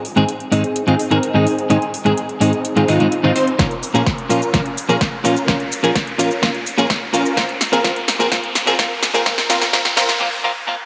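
A straight 4/4 pulse drives this emotional, powerful festival progressive house build-up, cut from a longer piece. A layered big-room kit of punchy snare, metallic hi-hats and cabasa sits up front, an electronic kick joins at 3.6 s under a drum fill, and a deep, saturated triangle sub bass is barely audible. A detuned unison supersaw stab carries the riff through a filter sweep with a moving notch, sidechain pumping and dub echo, while a dark, clean, picked electric guitar accompanies with its own pumping and echo, and a background riser and noise sweep lead into a short break at 10.2 s, the mix bathed in lush hall reverb.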